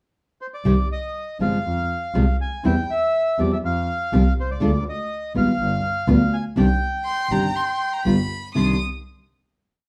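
A milonga rhythm from a clear, focused double bass, bowed with vibrato, drives this short, complete tango in C minor at 122 BPM, its rubato feel dramatic and passionate. From 0.4 s a reedy, vintage bandoneon sings a motif-based melody in sentence-like phrases over fingerpicked nylon-string guitar in short, full-bodied chords, the three parts sitting up front within a wet studio reverb heard from further back in the room. At 7.0 s a warm violin with soft attack, vibrato and portamento answers in the melody's rests through a slapback echo, before the piece comes to rest on a final chord at 8.6 s.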